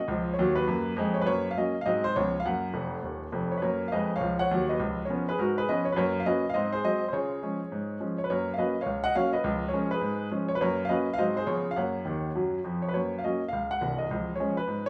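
A clear, intimate baby grand piano plays solo stride jazz from the first moment, swinging briskly at 206 BPM in 4/4 in F# major with a playful mood, moving through chords such as C#7, G#7 and F#. Fills break out at 2.7 and 12.1 seconds, and the instrument sits up front with a natural tone and audible action noise. A wet large-studio reverb places the performance in a live room, and the recording is cut from a longer piece, ending at 14.9 seconds.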